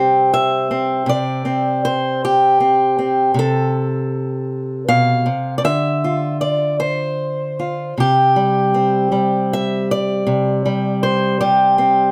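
Hopeful and warm, this short folk excerpt features a solo fingerpicked acoustic archtop guitar at an unhurried 79 BPM in 3/4, moving through Csus2, F/C and Dm7 in C major before returning to Csus2 at 8.0 seconds. The guitar sits up front, captured by close, detailed microphones with light reverb, spanning from B2 to F5 across the 12.1-second passage cut from a longer piece.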